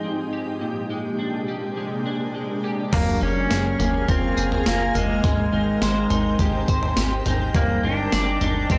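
This dreamy, floating dream pop fragment opens on a detuned, ethereal pad with an octave-up shimmer and an electric guitar at the edge of break-up, picking chorused, delayed arpeggios through the chords. At 2.9 seconds a bright, clean pedal steel enters up front with a slide melody and volume swells. A plucky, punchy analog bass and a thumpy, overdriven 80s drum machine with a gated snare, toms, tambourine and crash arrive at the same moment, all captured as a gritty hardware recording.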